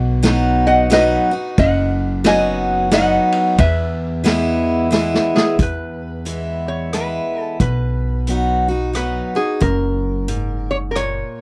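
Easygoing and nostalgic, this short cut from a longer honky-tonk and classic country piece sways in 3/4 at 90 BPM with a swung eighth-note feel, set in E major. A lap resonator guitar carries the melody with slide and fingerpicks, its tone metallic and nasal yet mellow, while a picked dreadnought steel-string acoustic guitar fills out the accompaniment with a bright, full-bodied sound. Underneath, a pizzicato upright bass with steel strings sounds woody and growly, and a vintage acoustic drum kit keeps time on hi-hat, kick, snare, rim click and ride, with dark cymbals, a punchy kick and a gritty, saturated character. The harmony moves from B to E, back to B and then to F#, and a drum fill from 4.9 to 5.6 seconds leads into the second section. The recording is dry and close in a 1970s studio style with light reverb, and the guitars and bass sit up front.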